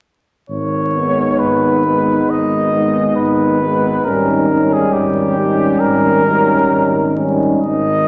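Solemn and yearning, this rubato, hymn-like passage for brass band moves at 68 BPM in G# minor, cut from a longer piece and shifting from G#m to D#7/G#. An up-front cornet with light vibrato carries the melody from 0.5 seconds over a distant, roomy tuba bass. From 1.0 to 7.6 seconds a mellow French horn section holds a second line in the background, joined in accompaniment by a clear euphonium and a close-miked trombone, all bathed in wet scoring stage reverb with a layer of vinyl crackle.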